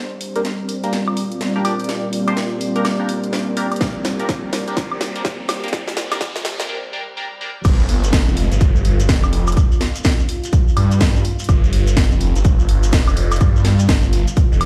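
A swung sixteenth-note groove in 4/4 drives this aggressive, gritty bass house excerpt, cut from a longer piece. It opens on a build-up: a deep, moody ambient pad sits in the background beneath an airy, breathy pad, while an electronic riser, swell and downlifter effect sits in the background behind a house drum kit with a cracking snare, warm hats, crash, woodblock and a drum fill under a filter sweep. A nasal, band-passed chord stab with phaser and digital delay jabs through this first half on a G minor chord, and a punchy, overdriven electronic kick joins at 3.8 seconds, placed up front. After a short break and swell, the drop lands at 7.6 seconds, bringing in a thick, swirling detuned saw bass, saturated and phased, with a grainy, compressed shekere adding texture as the stabs fall away. Sidechain pumping on the pads, stab and bass, along with a large studio reverb and a bare-room sound-system character, give the mix its heavy, cavernous feel.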